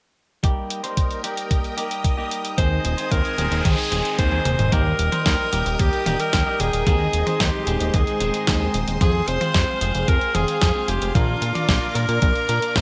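Italo disco with a danceable, romantic mood, this excerpt rides a thumpy electronic kick and a clean 12-bit drum machine of hi-hat, medium-tuned snare and toms under lush string machine chords with ensemble chorus and twangy, low-pass-filtered clean electric guitar stabs, before a fat, detuned sawtooth analog bass and an edgy, up-front alto saxophone melody with light vibrato and delay enter at 2.6 seconds, a background noise sweep and drum fill leading into the second section at 4.7 seconds, all in a bright 1980s-style digital production with moderate plate reverb.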